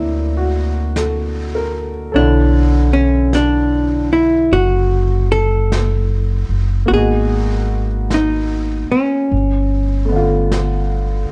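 A slow swung 4/4 at 50 BPM carries this late-night, intimate jazz ballad fragment: a clean, compressed hollow-body archtop guitar picks the melody up front over a woody pizzicato upright bass with steel strings, a clear upright piano with audible action noise accompanies through F#7alt, Bm11, G#m7 and G9, and a smooth brush kit with a rolled-off top and a medium-tuned snare enters at 1.0 s, the whole mix sitting in light reverb with a dark, warm production.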